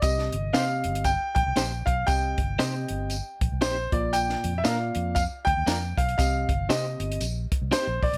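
A clear, up-front grand piano carries the melody through this short, passionate slice of uptempo 1960s-style soul in C minor, driving along at 117 BPM with a swung eighth-note feel over a Cm to Bb and back to Cm progression. Beneath it, a reedy, worn, slightly out-of-tune electric piano heard through its built-in speakers supplies the accompaniment, a dark, round, foam-muted fingered bass anchors the low end, and a compact cocktail drum kit with a dry, high-tuned snare and punchy kick pushes forward beside a jingly, band-limited tambourine. From 0.5 seconds a bright, compressed clean electric guitar, recorded direct with tube saturation and tremolo, adds picked stabs, and the whole mix sits in light reverb and small-room ambience.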